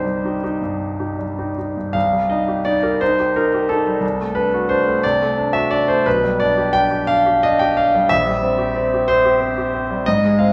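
Bittersweet and stormy, this brief excerpt of a romantic classical character piece in 6/8 with free rubato features a bright, brilliant concert grand piano, polished and up front with deep bass, moving through shifting harmonies over a descending bass line in a reverberant recital hall that lends the solo playing a resonant glow.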